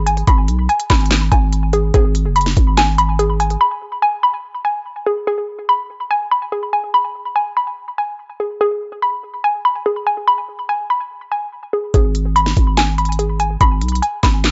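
A dry, gritty hardware recording with a dulled top end frames this melancholic, menacing trap piece in G# minor, moving at 144 BPM with a half-time feel. A hollow, bouncy square-wave pluck, detuned and chorused with tape echo and a low-pass filter, plays mellow arpeggios throughout. A growling, buzzy 808-style bass and an up-front electronic kit, with knocking kick, sharp snare, crisp hats and handclaps, drop out at 3.6 seconds, leaving the pluck alone until they return at 11.9 seconds.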